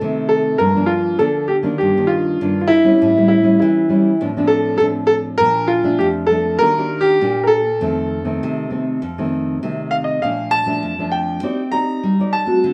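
A straight samba groove in 4/4 carries this playful, festive fragment of a longer piece, where an up-front grand piano with a natural tone sings the melody over a dark, thumb-plucked classical nylon-string guitar, both bathed in a short, wet studio reverb as the harmony turns toward a fresh passage at 10.2 seconds.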